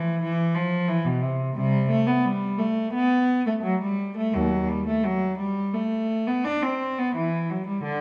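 A lone bowed cello opens the recording, playing a baroque-style suite movement in G major with a serene, radiant mood. The single player takes a rubato approach around 86 BPM in 4/4, moving between Eb2 and D4 across the full 8.0 seconds. The period-style, gut-string tone is nasal and reedy, with a gentle warmth at its core. The cello sits up front yet carries a distant quality, set in a wet stone room whose reverb rings for about 1.4 seconds. Tuned to A4 = 444 Hz, this brief fragment is cut from a longer piece.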